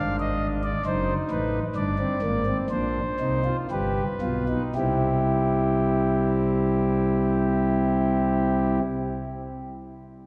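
Driving yet solemn, this short passage cut from a longer baroque-style fugue in three parts sets a pipe organ alone in a vast, wet cathedral whose reverb hangs for 4.4 seconds. The tempo sits between 55 and 70 BPM in a straight 3/4, and it slows down over the first 4.8 seconds before the music moves into a new section. Played on a principal stop with baroque voicing, the organ sounds warm, smooth and up front, with a chiff at the start of its notes, and it spans from F#1 down low to F5 up high. The harmony passes through diminished chords, Ddim and F#dim7, then a bare C5 over G and a G7 that resolves to C at 4.8 seconds. The organ sounds until 8.8 seconds, its tone carrying into the long cathedral decay.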